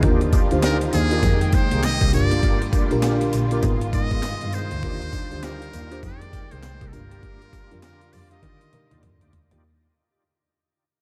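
Swung sixteenths at 100 BPM drive this bouncy, flirty new jack swing excerpt in Eb major, where a gritty, pitched-up breakbeat kit with thumpy kick, handclaps and tambourine sits up front over a bowed, earthy double bass, a dark tremolo FM electric piano, lush, distant strings and a reedy tonewheel organ with slow rotary and key click, while a buzzy metal-muted trumpet carries the melody from 0.6 to 9.2 seconds through Ebmaj9, Fm11 and Gm7 changes before a drum fill at 8.4 seconds as the whole passage fades.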